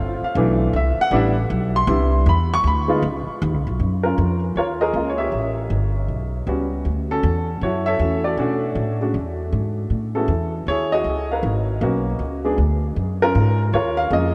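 Plucked, woody upright bass opens this playful jazz piano trio cut from a longer piece, joined at 0.2 seconds by a warm, up-front upright piano that takes a solo through 3.8 seconds and carries the melody over lush ninth and thirteenth chords at a swinging 157 BPM in 4/4, all bathed in the long, echoing wash of a vast cathedral reverb.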